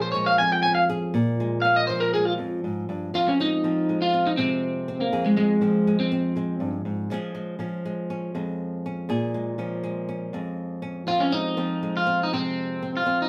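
Danceable and bittersweet, this highlife excerpt moves at 121 BPM in a straight 4/4 in F minor, with a fingerpicked flamenco guitar carrying the accompaniment throughout, its finger squeaks audible up front. A picked, twangy electric guitar at the edge of break-up takes the melody, opening with a clean solo turn until 3.1 seconds, dropping out at 6.7 seconds and returning at 11.1 seconds. The band plays live in one room with moderate studio reverb, alternating between Bbm7 and Fm over the span.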